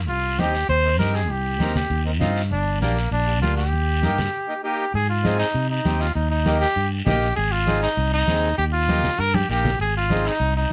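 Set in light reverb, this passionate, fiery cumbia puts a punchy, vintage trumpet soloing with light vibrato up front alongside a dark, round fingered electric bass, while a reedy, full accordion, a raspy guiro and thick-skinned, damped congas in the background fill out the groove, with a brief break at 4.3 seconds leading into the second section and a drum fill at 9.3 seconds.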